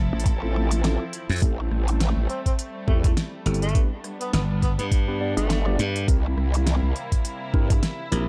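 A swung sixteenth-note groove in 4/4 drives this swaggering, playful glitch hop excerpt, anchored by a knocking, up-front electronic kick and a layered pop kit with a fat snare, crisp hi-hats and rim clicks. Two basses share the low end: a bright, punchy slap bass and a growl bass that is wobbling, detuned and saturated, shaped by a formant filter and chorus. Mellow tine electric piano stabs and sustained chords from a bowed studio string section with a reedy gut-string tone both carry vintage 12-bit sampler grit and sidechain pumping, and the piano also trails a digital delay. A breathy tenor saxophone enters at 2.3 seconds with a whispered, intimate jazz-style melody full of scooped notes and subtone, set in digital delay, before it drops out at 5.8 seconds. The harmony moves from Fmaj7 through Am7 and G to C7, all wrapped in dark digital ambience with a warm production.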